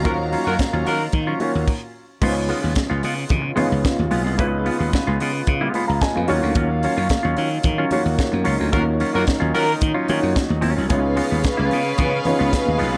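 A sultry, driving disco passage at 111 BPM opens with the whole band hitting together, punchy mellow horn stabs and dark, soft-bowed strings over a growly, up-front slap bass and a tight funk kit with a high-tuned snare, before a stop from 1.7 to 2.2 seconds. The groove then rolls on between Ebm9 and Db7, with a dark grand piano and a clean, compressed semi-hollow guitar with spring reverb comping throughout, warm French horns holding chords in the background, and very quiet, ringing congas beneath. The horn stabs return at 8.7 seconds for another band accent, and the intimate strings come back at 10.9 seconds as this cut from a longer piece closes in a small, lightly reverberant room.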